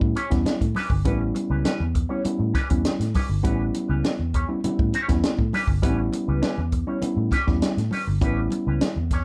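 This funk excerpt settles into a hypnotic, funky groove at 100 BPM in straight 4/4, resting on a single A9 chord for its full 9.2 seconds, tuned slightly flat to A4 = 439 Hz. A vintage fingered electric bass with a foam-muted, round tone sits up front, its amped sound thickened by tube saturation. A compact cocktail drum kit of hi-hat, kick and snare sounds distant and roomy, with a high-tuned snare, a punchy kick and a rolled-off top. A clean, dark electric guitar is picked through an envelope filter with wah and a subtle chorus, while a worn, slightly out-of-tune tine electric piano adds direct stabs. Very quiet congas with thick, damped skins and soft hands enter at 0.2 seconds, their compressed, saturated tone blending into the warm, dark production under light reverb.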